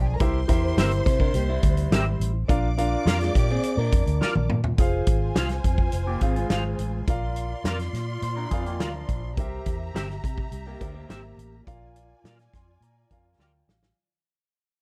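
A dark, small-room production frames this danceable uptempo 1960s-style soul excerpt at 105 BPM in Bb mixolydian, where a punchy country drum kit and a round, foam-muted fingered bass sit up front, a slightly broken-up lo-fi guitar with phaser plays the riff until 11.6 seconds, a bright semi-hollow guitar with ensemble chorus adds clean stabs, a concert grand with deep bass accompanies and drops in fills, and a lush, bowed string section with vibrato carries a second line, with drum fills at 4.2 and 13.4 seconds and a fade-out starting at 4.8 seconds.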